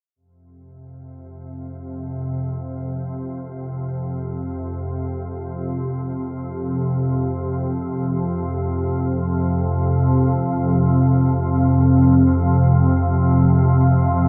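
A single organ-like drone fades in from 0.1 seconds over an F5 chord and becomes clear at 0.8 seconds. This ambient fragment, cut from a longer piece, drifts in free time with an ominous, vast mood. The drone sits low, between F2 and C3, and its detuned, sine-like unison tone is thickened by ensemble chorus and its own built-in reverb. With a slow attack, long sustain and long release, the calm sound evolves gradually while staying up front in the mix. A huge, wet ambient reverb with an 8.7-second decay and a dark production surround it until the fragment ends at 14.3 seconds.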